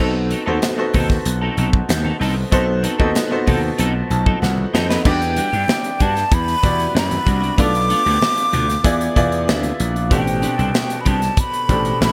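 A gritty, growly slap bass sits up front in this polished 1980s jazz-funk pop excerpt, its overdriven, punchy tone driving a straight 95 BPM groove in 4/4. A baby grand piano with a brilliant, long-sustaining sound and lush chorus carries the chords, while a dark, clean, picked electric guitar plays a riff through analog chorus. From 0.3 seconds a tight, small-room studio kit with gated reverb joins, alongside very quiet, low-tuned congas, and a piano fill from 3.8 seconds and a drum fill lead into the second section. At 5.1 seconds a breathy jazz flute takes the melody with a soft attack, straight tone and expressive, lifted highs, as the harmony moves from Em9 through Bm7b5 and E7b9 to Am11. The mood is nocturnal and bittersweet, framed by a moderate plate reverb and glossy 1980s-style digital production.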